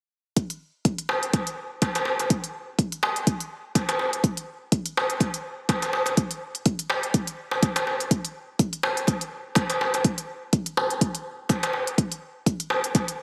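A deep, layered electronic kick sits up front alongside crisp, tape-warm electronic hi-hats from 0.4 s in this hypnotic, spiritual afro house piece at 124 BPM with a 55% swing on the sixteenths, joined at 1.1 s by a hard-handed, metal-shell darbuka that sounds both distant in a large room and up front, while the mix carries a moderate recital hall reverb and a heavily compressed, radio-like sound.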